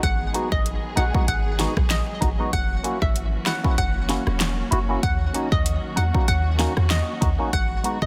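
Up front sits a punchy, overdriven deep house drum kit, its fat snare, metallic hats, handclaps and rim clicks driving a sultry, tough dancehall groove with a light swing on the sixteenths. Beneath it, a clean 808-style bass booms deep and dark, its sine tone striking fast and then decaying. A bright, detuned square-wave pluck carries the melody high up, hollow and bouncy with a filter sweep, chorus and tape echo, while a nasal, wave-folded organ stab with chorus enters at 0.3 seconds to add mellow percussive accompaniment. Low in the mix, a lush, woody string section holds bowed chords with vibrato and a sidechain pump, and soft-handed, high-tuned bongos tap very quietly and close. The harmony moves from G#m7 through F#7 and D#m7 back to G#m7 in this brief cut from a longer piece, with a dry room and a dense, heavily limited modern master.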